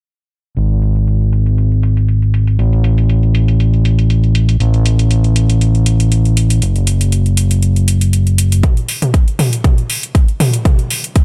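Sleek and cosmic, this short nu-disco cut from a longer piece moves at 119 BPM in 4/4 with a light 16th-note swing. An overdriven fingered electric bass sits up front from 0.6 to 8.6 seconds, dark and round in the low register, its tube saturation and sidechain pumping giving it an amped, breathing drive. A house drum kit runs from 0.6 to 11.2 seconds, its metallic hats and toms shaded by low-pass filtering, and a filter sweep plays over the drums through the opening stretch. At 8.6 seconds the bass stops and a punchy, tape-warm electronic kick drum arrives up front, carrying a build-up and drum fill to the close. The mix stays dry, with little reverb, and the layered drums were re-recorded in a small room.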